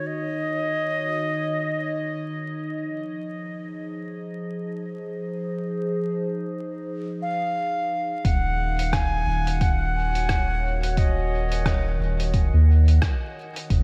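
Ambient dub at 88 BPM in Eb dorian, meditative and spacious, with a swung 16th-note feel, vinyl crackle and a light reverb. A warbling, nostalgic pad with chorus and its own built-in reverb holds sustained chords from the start, moving from Ebm7 to Fm7 while a filter sweep shapes it over the first 8.2 seconds. Up front, a bright, airy wooden flute plays a close-miked, expressive melody in a straight tone, with dub echo trailing its phrases as it comes and goes in the opening seconds and again from 7.2 seconds. At 8.2 seconds the chords return to Ebm7 and the groove arrives: a round, dark analog bass sits prominently beneath a deep, layered electronic kick, while a muffled, pitched-down sampler-style kit adds hi-hat and rim click, also treated with dub echo. This is a cut from a longer piece.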